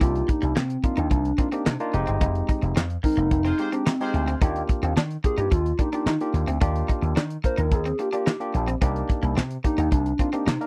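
A gliding portamento lead carries the melody in this smooth, feel-good slice of early-eighties boogie funk, its sustained triangle-and-sine tone shimmering with chorus, vibrato and tape echo. Beneath it, an up-front slap bass pushed through an envelope filter sounds bright and punchy, while a damped 70s drum kit with a fat snare, tight kick and rolled-off top lays down a straight 4/4 groove with handclaps and hi-hat. A barky tine electric piano, lightly overdriven through a combo amp, fills out the accompaniment, and an electric guitar at the edge of break-up picks a riff bathed in lush chorus. The band hits an accent from 2.2 to 4.4 seconds, and a clear, distant horn section with vibrato slips in briefly between 3.4 and 4.4 seconds as a second line. The harmony moves from Cm9 through Fm7 to Ebmaj7 and back, and the dry, close 1970s-style studio sound keeps this cut from a longer piece intimate and polished.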